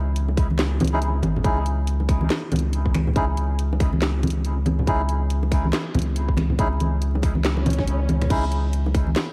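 A half-time 4/4 groove at 140 BPM, swung at 59% on the sixteenths, drives this brooding, cavernous deep dubstep excerpt in C# minor, cut from a longer piece. A tight, layered electronic kick anchors the beat beside a garage drum kit of crash cymbal, finger snaps, handclaps, hi-hat and a cracking snare, while ringing bongos and congas, played with soft hands and recorded close and dry, carry a dub echo. Underneath, a thick, saturated sub bass with a fast attack and sustained tone sits up front, moving between G#1 and C#2. From 0.9 seconds a reedy, breathy melodica with a nasal, plastic-case character adds dark, smooth stabs between C#4 and G#4, also treated with dub echo. An electronic swell appears briefly at 7.6 seconds, and the whole dreamy mix is soaked in a moderate plate reverb, dusted with vinyl crackle.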